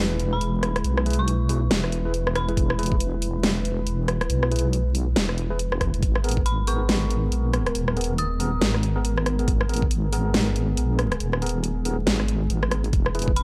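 A half-time, swung 139 BPM pulse in G# minor drives this meditative, heavy deep dubstep excerpt, where a huge, up-front snare with hi-hat and rim click and a knocking electronic kick sit over a deep, wobbling, chorused bass, while a barky, overdriven electric piano stabs through fast tremolo and dub echo, a moody ambient pad sustains chords from E to G#madd9 in the background, and an eerie, inharmonic FM bell sounds from 0.3 to 3.0 seconds and again from 6.5 to 8.6 seconds, all within a dry, gritty hardware sound dusted with vinyl crackle.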